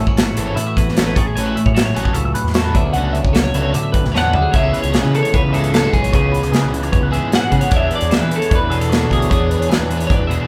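Math rock and midwest emo with an intricate, bright mood, this short cut from a longer piece layers a clean, compressed twelve-string electric guitar accompaniment, twangy twelve-string arpeggios through a phaser, a double-tracked overdriven garage guitar riff, a growling overdriven picked bass and a punchy, up-front acoustic drum kit whose fill from 4.1 seconds leads into a new section at 4.5 seconds. A third twelve-string guitar enters with the melody at 4.2 seconds and carries it to 9.7 seconds, over chords moving from Amaj7 through Dmaj13 to C#m7 and E7, all played live in one room with a moderate large studio reverb.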